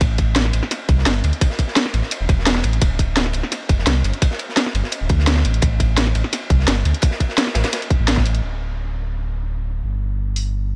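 A tight, layered electronic kick drum sits up front in this soulful, melancholic liquid drum and bass excerpt, moving at 171 BPM in a straight 4/4 in A minor. Beneath it, a deep, full sine sub bass doubled at the octave holds sustained notes between D1 and D2, with a fast attack that keeps it present near the front of the mix. A produced drum and bass kit adds hi-hat and a cracking snare, while a quieter acoustic breakbeat kit, recorded in a small room, contributes a gritty, saturated layer of dark ride cymbal and a medium-tuned snare. The kit has a dark, rolled-off top, and high-pass filters thin its cymbals, snare and room. The kick and the breakbeat drop out at 8.2 and 8.3 seconds, leaving the sub bass and the electronic kit to carry a short closing passage that begins at 8.4 seconds. A small room ambience surrounds the track, lending it an intimate sense of space.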